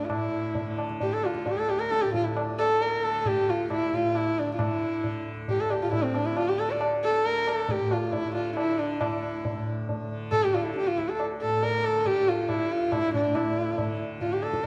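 Set in a straight 5/4 at 136 BPM and steadily speeding up, this solemn, longing Hindustani passage in raga Darbari on D is cut from a longer performance. A single dark sarangi carries the melody up front, gliding with portamento, light vibrato and an airy, soft-attacked bow that rings through its sympathetic strings. Beneath it a bright, buzzing tanpura drone shimmers, and a low-tuned, vintage-sounding tabla with short ring sits further back, all within a wet recital-hall reverb and a dark, warm production.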